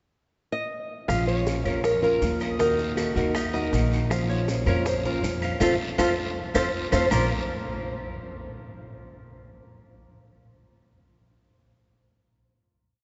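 Heard through a cathedral-like reverb with a long, dark tail and muted highs, this short, complete Cuban son and guajira piece in Bb harmonic minor moves at a sultry, danceable 160 BPM in 4/4. A small-sounding nylon-string guitar opens at 0.5 s with motif-based call phrases, and at 1.1 s the band joins: a thumpy, up-front upright bass playing a tumbao that anticipates the chords, a fingerpicked plugged-in steel-string acoustic guitar strumming with muted slaps and finger squeak, tight high-tuned bongos in steady eighths, distant woody claves on a two-bar time line, a raspy, saturated guiro and grainy maracas. A Cuban tres with metallic double strings weaves an arpeggiated guajeo through the Bbm, Ebm and F changes, before a band accent and a drum fill lead to a final Bb5 chord at 7.1 s.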